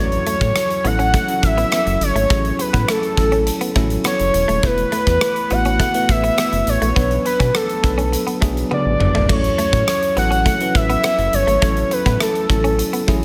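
A steady, straight 4/4 groove at 103 BPM in A major drives this glossy, romantic 1980s-style pop excerpt, with a huge, punchy arena drum kit of kick, hi-hat, rim click, crash and toms joining at 0.1 seconds and rolling through a drum fill at 8.7 seconds before the chords return to A6 at 9.3 seconds. Up front, a fat, full-bodied analog lead carries the melody with vibrato and delay, over a bell-like tine electric piano, a round, dark analog bass and a clean, direct-recorded electric guitar riff with subtle chorus sitting in the background. The chords move from A6 through Esus4 and Bm, and light studio reverb gives the mix its polished sheen.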